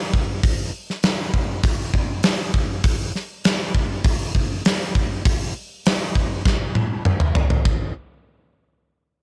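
This rock passage has a swaggering, driving mood, carried entirely by a gated 80s drum kit in a straight 4/4 feel. The acoustic kit of hi-hat, kick drum, snare drum and toms sits up front, with a punchy kick and a medium-tuned snare. Its sound is polished and airy, shaped by a big, gated room, while the overall space carries a light reverb. The drums play from 0.1 s, and a fill from 6.5 s to 7.7 s leads into a new section. The kit then stops at 7.8 s, shortly after that section begins, in this clip cut from a longer piece.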